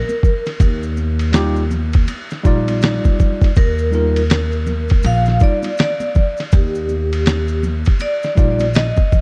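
A muffled, sampler-style drum kit sits up front in this short cut from a longer jazz-hop piece, its thumpy kick and fat snare pitched down and compressed with a tape-warm tone, while hi-hat and ride cymbal fill out the groove at 81 BPM in 4/4 with a lazy 61% swing on the sixteenths. A metallic, ringing vibraphone played with medium hard mallets carries the melody from the very start, its fast motor vibrato trailing off into tape echo. Woody pizzicato upright bass, also up front, enters at 0.6 seconds, and a clean tine electric piano heard through its built-in speakers adds accompaniment from 1.3 seconds. Congas and maracas, played with soft hands in a small room, sit quietly in the background. The whole passage rests on a single Ebmaj9 chord in Eb major, giving a cool, warm mood under a dark studio reverb.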